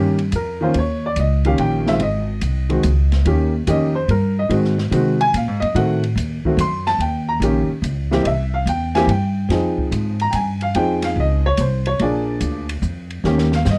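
This is a short cut from a longer jazz piano trio piece, relaxed and playful in 3/4 at 144 BPM with a swung eighth-note feel in Eb mixolydian. The upright piano carries the melody from the very start, its tone woody, boxy and slightly detuned, sitting up front alongside the pizzicato upright bass, whose steel strings give a growly, thumpy character. The acoustic drum kit joins at 0.2 seconds, set back in a small room with dark cymbals, a medium-tuned snare and a boomy kick, using hi-hat, ride, snare and kick. The harmony moves from Eb7 through Ab, Ab7 and Adim7, then on to C, Fm7 and Bb7 before settling back on Eb7. A drum fill closes the passage at 13.2 seconds, and light reverb and a dark, warm production shape the whole trio.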